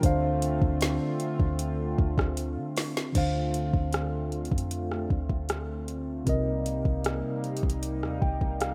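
This contemporary R&B excerpt has a moody, late-night feel, moving at 77 BPM in a straight 4/4 in D phrygian, with harmony shifting from Dm7 to Cm7. A mellow tine electric piano carries the accompaniment with a clean, direct tone, while a chorused pulse-width pad holds shimmering, retro sustained chords that pump against the sidechain. Underneath, a clean 808-style bass sits deep and boomy, its sine-like notes striking fast and decaying darkly. The smooth, produced drum kit sits up front, pairing a soft kick and woody snare with metallic hats, rim clicks and crash cymbal, and it plays a fill at 2.4 seconds before the music moves into a new section at 3.2 seconds. The electric piano adds a fill of its own from 7.8 seconds, all set in light digital ambience within a rough home demo mix.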